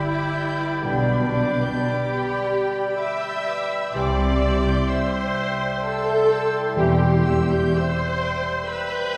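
Heard from further back in a reverberant concert hall, this solemn, elegiac classical fragment moves in a slow, rubato 3/4 at 54-67 BPM over G, G/B, C and C/E harmonies. Lush, up-front violas carry the accompaniment beside a soft-attacked bassoon and a ringing, fingerpicked harp. A rich, vibrato-laden violin section sings the melody in the background, while a second violin line, an airy metallic flute, a distant oboe and a roomy clarinet weave second lines around it. From 0.8 s, expressive cellos with portamento and close, bowed double basses anchor the bass, joined by very quiet trombones and punchy, tight French horns holding sustained chords.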